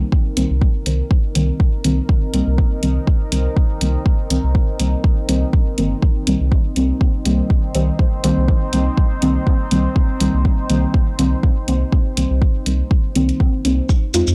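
A steady 4/4 pulse at 122 BPM, with a light swing on the sixteenths, drives this nocturnal, hazy dub techno excerpt in C minor, resting on a single Cm7 chord throughout its 14.3 seconds. The electronic kick sits up front, layered and deep with a tape-warm weight, while an analog hi-hat and shaker, re-recorded in a large room, enter at 0.4 seconds and stay low in the mix. Beneath them, a round analog bass blends sawtooth and sine tones with a fast attack, sustaining dark low notes with sidechain pumping. A soft, wave-folded chord stab in the middle register carries chorus, phaser and dub echo. Far behind, a deep, evolving ambient pad of detuned unison sawtooths and a sub octave swells in slowly with chorus, its own reverb and sidechain pumping, giving a moody haze to an otherwise dry and gritty hardware sound.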